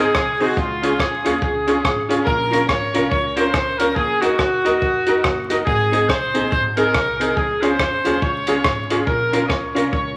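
Swung eighths at 141 BPM in 4/4 drive this upbeat, joyful ska passage in Db major, cut from a longer piece, where a tight, bright horn section carries the melody up front over jangly, detuned stabs from a vintage honky-tonk upright piano, a clean hollow-body archtop guitar with tape echo sitting in the background, a woody, thumpy pizzicato upright bass, and a dry compact cocktail drum kit with a punchy kick, hi-hat and rim click, set in a wet large studio reverb with vinyl crackle as the chords move through Ab, Db, Bbm and Ebm.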